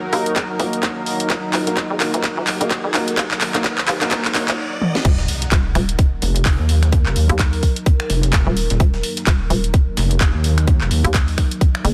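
Opening on a resonant, evolving pad, a blurred granular cloud and clear, worn grand piano stabs over a hollow, knocking FM bass, tight electronic kick and cracking house drums, this gritty, swaggering bass house cut in Eb minor at 128 BPM with a 16th-note swing builds through a drum fill and a very quiet riser until the drop at 5.0 s, where a quiet gritty breakbeat layer joins and a heavy, detuned, pulsing pluck wobble bass with overdrive and sidechain pumping arrives at 6.2 s, all in a dense, heavily limited mix with light digital ambience.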